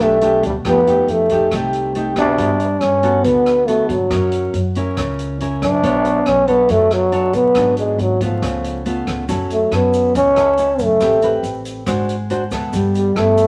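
Vinyl crackle and a moderate studio reverb frame this breezy, romantic bossa nova, where a raspy, growling trombone sings the melody up front with a soft attack and a vintage jazz character. Beneath it, a full-bodied, fingerpicked nylon-string guitar, with the occasional finger squeak, moves through rich jazz chords such as Gmaj9, Bm9 and C#7b13, while a woody, thumpy pizzicato upright bass anchors the low end. A natural-sounding swinging big-band drum kit adds hi-hat, rim click and a punchy kick, and a grainy, bright tube shaker slips into the background at 9.3 seconds.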